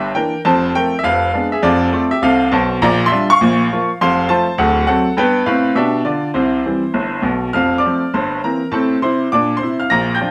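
A swinging eighth-note lilt drives this exuberant stride piano jazz fragment, where a solo upright piano with a brilliant, woody, polished tone and long sustain rings through a small, reverberant room, moving through changes from F and Fdim7 to D7, G7 and C before a new section begins at 7.5 seconds.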